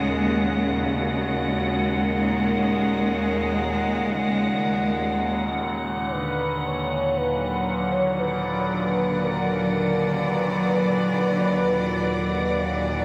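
A bright, up-front cello section sustains bowed chords with vibrato, moving from Ebm7 to Bm at 6.1 seconds in this desolate, unsettling dark ambient drone in free time. Beneath it, a low drone of evolving, moving overtones fades in, and an icy, crystalline glass pad hangs high. A round, horn-like synth lead carries the melody with phaser, chorus and tape echo as it gradually fades in. The whole fragment is bathed in a cavernous cathedral reverb.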